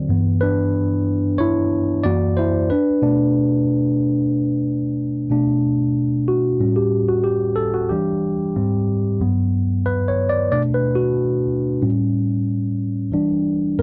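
A solo tine electric piano opens this smooth, late-night R&B passage, cut from a longer piece, and carries it alone through its full 13.8 seconds. Set at 92 BPM in 4/4 with a light swing on the sixteenths, it sits in B minor and ranges from F#2 up to D5. The instrument sounds worn and slightly out of tune yet clean and direct, placed up front with a phaser coloring its tone. The harmony moves from G6 through F#aug7 to Bm7, then a second passage beginning at 5.3 seconds travels through A7, Em7, G#maj7 and Gmaj7 before circling back to Bm7, A7 and Em7. Light reverb touches an otherwise dry, close studio sound in a 1970s style.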